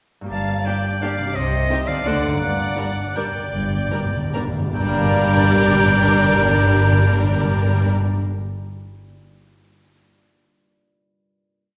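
Heard from further back in a reverberant scoring stage, this short orchestral ballroom waltz in 3/4 has a sweeping, bittersweet mood and a rubato feel. A concert harp opens at 0.2 seconds with ringing, fingerpicked rolled chords in the background. It is joined by the strings: a rich cello section with very quiet sustained bass on the beats, and a close, smooth double bass section doubling that bass line. A distant, lush violin section adds sustained after-beat chords, and a focused viola section fills in the accompaniment. The melody belongs to a bright oboe with light vibrato, played classical style, while a second violin section with a smooth top doubles the tune in thirds. The music slows from 1.9 seconds, and the timpani, struck with soft mallets on round calf heads, rolls a fill from 2.4 seconds before the piece settles on a final chord at 4.7 seconds.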